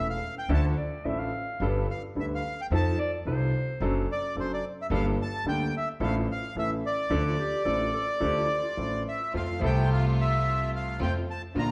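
A melancholic, sultry tango fragment opens with a reedy, mid-forward bandoneon carrying the melody up front, over a smooth, vintage-toned concert grand piano with deep bass and a woody, dark pizzicato upright bass, all moving with a loose rubato feel. At 0.8 seconds a clear, classical-style solo clarinet slips in underneath as a softer second line, and it returns at 7.4 seconds. The harmony moves through minor chords, added-ninth colours and dominant sevenths before turning to a brighter major chord at 9.3 seconds. There the music shifts into a new section, where a bowed studio string ensemble adds soft-attack, sul tasto stabs with a pure, floating, warm tone. The band sounds as if playing live together in one room, wrapped in a large, wet studio reverb.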